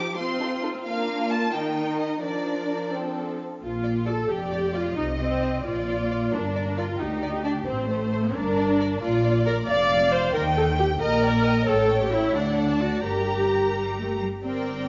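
Up front and smooth, the viola section carries the accompaniment in this cheerful, lively classical-period movement for string orchestra in a quick 6/8 at 89 BPM, while a focused first violin section sings the melody high above, a dark, woody second violin section adds an inner line, a lush cello section holds the bass, and a close, bowed double bass section joins beneath it at 3.6 s, all set in the wet reverb of a scoring stage as the music turns from Bb major toward G minor at 9.0 s in this excerpt cut from a longer piece.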